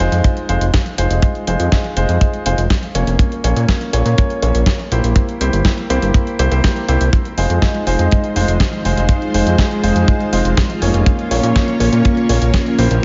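Nostalgic and melodramatic, this italo disco excerpt at 122 BPM in F minor sets clear, up-front grand piano stabs drenched in diffuse delay and shimmer reverb over a fat, detuned sawtooth analog bass with a filter sweep, a tight acoustic kick and a clean 12-bit drum machine's hi-hat and snare, with a lush, vintage string machine adding mellow sustained chords from 7.1 s through a dreamy, reverb-soaked hall as the harmony moves from Fm7 through Bbm and C7.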